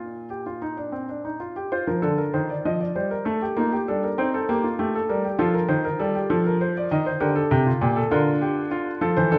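Heard through a wet recital-hall reverb with a roomy, resonant sheen, this short excerpt cut from a longer classical piece presents a stately yet lively baroque-style three-part fugue in 12/8, played by a solo baby grand piano whose tone is warm, present and up front as it moves from Bb through Cm7 and F7 back to Bb, ending at 9.4 seconds.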